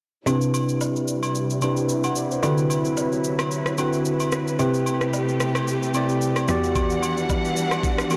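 From 0.3 s, a clean, up-front tine electric piano through a combo amp plays this hypnotic, soulful amapiano passage at 111 BPM with a 16th-note swing, together with a lush, woody bowed string section, a rich, expressive cello bass with vibrato and portamento in the background, a smooth electronic R&B kit with a knocking kick, rim click and shaker, and compressed, saturated acoustic agogo bells and woodblock, all entering at once and moving through Cmaj7, D13, Am9/C and Em9 under a filter sweep, a lush hall reverb and a blown-out, overdriven sheen.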